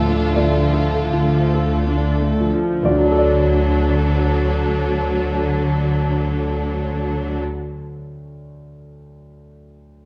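A dark, warm production sets this brief classical excerpt on a moderately reverberant scoring stage, with a brooding, passionate mood. The tempo sits at 44-51 BPM in 3/4 with a rubato feel, slowing down over the opening 2.8 seconds as the harmony moves from D minor to D major. A clear, open concert grand piano carries the melody with a deep bass, continuing after the strings stop at 7.4 seconds and ringing on to 10.1 seconds. A rich, focused violin section shares the melody from the background, while a second violin section with a smooth top plays a supporting line. A lush, even viola section fills the accompaniment, and a rich cello section joins a double bass section, expressive and soft in attack, up front on the bass. From 2.8 seconds, a very quiet timpani with hard mallets and calf heads adds articulate, close and dry strokes.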